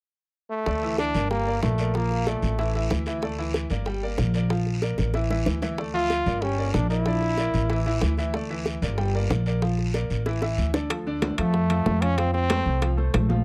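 Driving straight salsa rhythm carries this passionate, danceable fragment of a longer latin piece, with tight, hard-handed bongos, a raspy guiro and a thumpy, woody gut-string upright bass up front, all in a dry, close 1970s-style studio sound. A punchy, forceful trombone with vibrato states the solo melody in short phrases over a bright concert grand piano that fills out the minor-key chords, and drum fills mark the turns. At 10.9 seconds the guiro drops out as ringing high-tuned congas and metal-shell timbales join for a new section built on D minor and F.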